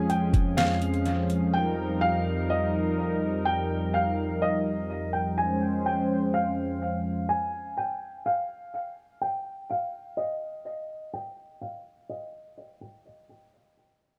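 A soft, felt-muted upright piano with audible action noise carries a mellow, intimate high melody through analog delay in this ethereal, spacious atmospheric cloud-rap piece at 125 BPM in half-time F minor, over a detuned sawtooth analog pad with chorus and sidechain pumping that sustains chords until 7.3 s, while a smooth R&B kit with knocking kick, deep snare and metallic hats appears only from 0.1 to 1.4 s, the whole set in an echo-heavy mix with light reverb and a filter sweep.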